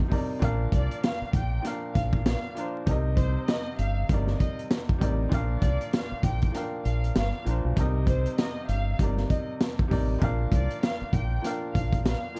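A crunchy, saturated breakbeat kit with a tight kick and gritty, rolled-off top opens this moody, reflective boom-bap hip-hop excerpt at 98 BPM together with a bright, woody upright piano carrying the chords through cassette-tape coloring and plate reverb, while a deep, round fingered electric bass enters at 0.4 seconds. A lush, bowed violin section with vibrato carries the melody from 0.7 seconds, treated with slapback echo and plate reverb, as the harmony alternates between Bb and Cm7 with a swung 16th-note feel. The kick drops out between 6.5 and 7.8 seconds, and the whole excerpt sits in a dark production with vinyl crackle and light reverb.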